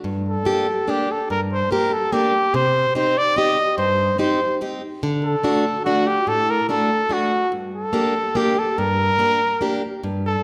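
A wet recital-hall reverb surrounds this festive, bouncy piece of alpine folk, heard as a short section cut from a longer work. A picked, plugged-in steel-string acoustic guitar opens the accompaniment from the first moment, its boxy acoustic tone up front, with an audible finger squeak. The solo trumpet enters at 0.3 seconds and carries the melody in a classical style, its clear tone shaped by a soft attack and light vibrato, also placed up front. The music moves in a triple metre with a gentle swing, passing through Gm, Cm and D before returning to Gm. Both parts play on together to the end at 10.4 seconds.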